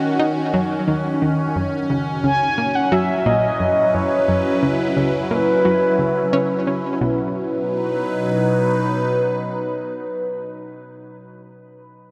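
A straight 4/4 pulse carries this luminous, cosmic stretch of sequencer-driven ambient space music, where a round, sub-octave analog pluck riff with chorus and tape echo runs from 0.2 to 7.3 s beneath a mellow, warbling horn-like synth lead with vibrato, while an up-front, detuned wavetable pad morphs through sustained chords under a phaser, inside a vast, echoing cathedral reverb as the harmony moves from D#m7 through F#7sus4 to B at 7.0 s.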